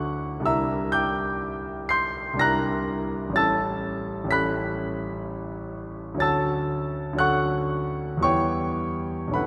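A wet concert hall reverb, with a long 2.5-second decay, surrounds a clear, natural-sounding concert grand piano that sits up front with a deep bass. This short passage, cut from a longer piece, is impressionist classical solo piano with a mysterious, nocturnal mood. It moves in a slow, rubato three, spanning the keyboard from A1 up to C7. The harmony drifts through rich extended chords: C9 at 0.5 seconds, then A9, Dmaj7 and Em6 at 8.2 seconds. The piano plays alone for the full 9.5 seconds as a single unfolding section.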